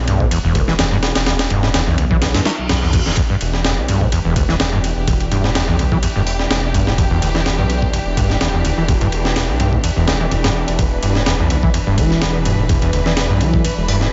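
A swung breakbeat groove at 126 BPM in 4/4 drives this swaggering, funky clip from a longer piece in E minor, resting on an Em7 chord. The sampler-style drum kit sits up front, compressed, pitched up and gritty, with a thumpy kick, a high-tuned snare, hi-hat and ride, all re-recorded in a large room. Underneath, a phased detuned saw bass gives a swirling, thick low end, while an overdriven acid bass carries the riff, squelchy and resonant, with a filter sweep running through it, distortion, subtle chorus, cassette tape colour and tape echo. A reverse cymbal sits in the background from 2.4 to 3.2 seconds, and at 3.2 seconds a lush, distant string section enters with sustained bowed chords, rich with vibrato and pumping with sidechain motion. The mix is dry and dark, with little reverb and its top end rolled off above 7.7 kHz.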